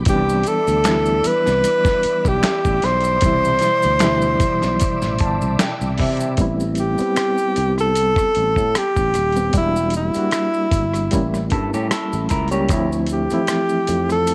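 Opening on a barky, lightly overdriven reed electric piano with fast tremolo, a smooth tonewheel organ through a fast rotary speaker that drops out at 6.3 seconds, and a growly fretless bass, this relaxed, soulful neo-soul excerpt at 76 BPM with a gentle sixteenth-note swing quickly brings in a breathy, up-front tenor saxophone carrying the melody, a gritty, compressed sampler-style drum kit with a thumpy kick, background maracas and finger snaps, and, from 11.5 to 12.9 seconds, a slightly broken-up lo-fi electric guitar with spring reverb, as the chords move from Cmaj9 through Am7 and A7b9 to Dm7 in light digital ambience.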